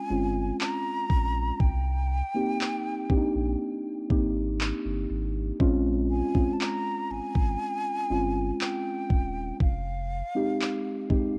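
Moody and longing, this short cut of contemporary R&B moves at a slow 60 BPM in a straight 4/4, sitting in Bb dorian and circling through Bbm7, Cm7 and Fm7. Muted, felt-like synth keys open at 0.0 seconds alongside a breathy concert flute. The keys have a soft, dark, intimate tone, their fast attack decaying under a chorus shimmer, with a filter sweep and a noise layer. A saturated sub bass arrives at 0.1 seconds, deep and thick with a sustained, up-front weight, and the smooth drum kit joins at 0.6 seconds with a knocking electronic kick and handclaps carrying vintage 12-bit sampler grit. Above them, the flute sings the melody in a high register, tongued and expressive with vibrato and lifted highs. The keys, flute and drums share a cassette tape tint, and the whole piece sits in light reverb with the close, homespun character of a home recording on cassette.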